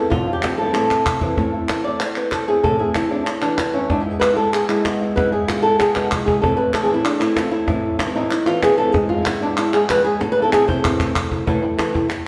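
A straight 190 BPM flamenco pulse in 4/4 carries this dramatic, passionate excerpt in A harmonic minor, where an up-front, fingerpicked nylon-string guitar with audible finger squeak takes a solo from 1.4 seconds over dark guitar stabs, a woody, hard-handed cajon with faint snares and its fills, and crisp palmas hand claps, all set back in a reverberant stone room as the chords move between Am and E/G#.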